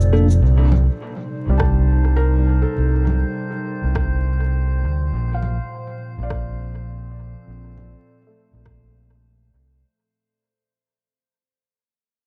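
Swung sixteenths at 102 BPM drive this deep, hazy ambient dub fragment in C dorian, moving from Cm to Bbmaj7 as a punchy, overdriven fingered electric bass sits up front beneath electronic cabasa, congas and rim click soaked in dub echo, a layered electronic kick that arrives at 1.6 s in the background, a warbling, nostalgic tape-like pad of detuned sustained chords, a soft felt-muted upright piano with audible action noise playing filtered arpeggios through tape echo and a filter sweep, and a glassy, drifting harmonics texture that enters at 0.9 s, all in a dark, warm production with vinyl crackle that fades out across the passage.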